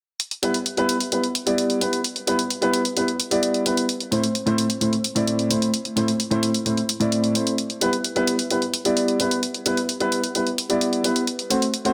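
Festival progressive house in E minor at 130 BPM in a straight 4/4, this emotional, powerful passage, cut from a longer piece and tuned to A4 = 445 Hz, opens with a layered, produced electronic hi-hat at 0.2 seconds, joined at 0.4 seconds by a dark, boxy grand piano. The piano carries the accompaniment from A2 to D5, moving through Em, Am, Em and then F#dim, its mellow tone trailed by digital delay and sitting up front beside the hi-hat. A wet digital room reverb, 1.1 seconds long, surrounds a dense, heavily limited modern master.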